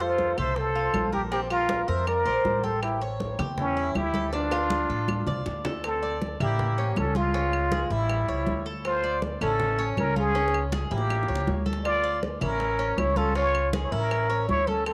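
With light studio reverb around it, this nostalgic, danceable Cuban son and guajira excerpt in D minor moves at 160 BPM, led by a breathy, wah-wah plunger-muted trumpet up front over a raspy, growling second trumpet in the background, with mellow, metallic tres arpeggios through tape echo, a thumpy pizzicato upright bass, ringing congas, tight high-tuned bongos entering at 0.2 seconds, woody claves, and drum fills at 4.3 and 10.4 seconds.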